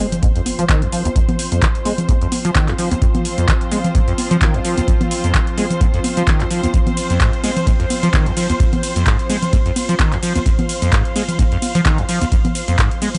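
A rubbery, resonant acid bass riff drives this gritty acid house excerpt, its saturated sawtooth tone pushed through overdrive, lush chorus, tape echo and a filter sweep. A deep, up-front electronic kick and a booming analog drum machine, with metallic hats, cabasa, congas, handclaps and ride cymbal, carry the swung groove, while a faint electronic impact sounds in the first 1.2 seconds. Behind them, a detuned sawtooth pad holds sustained chords with chorus, tremolo and sidechain pumping, and a distant bowed string section adds a pumping, vibrato-laden texture, all captured in a dry hardware recording.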